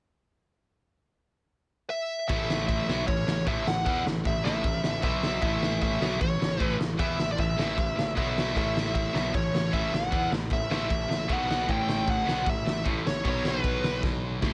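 A dark, overdriven lead guitar opens at 1.9 seconds over a brief unaccompanied pause, then at 2.3 seconds this rebellious, upbeat punk rock cut at 153 BPM in A major kicks in with two overdriven rhythm guitars, one sludgy and one hollow-bodied, riffing in the background on A5 and B5 power chords, a bright, growly picked bass, and an up-front garage drum kit with a fat snare and punchy kick in a stone room, before a drum fill closes the excerpt at 14.0 seconds.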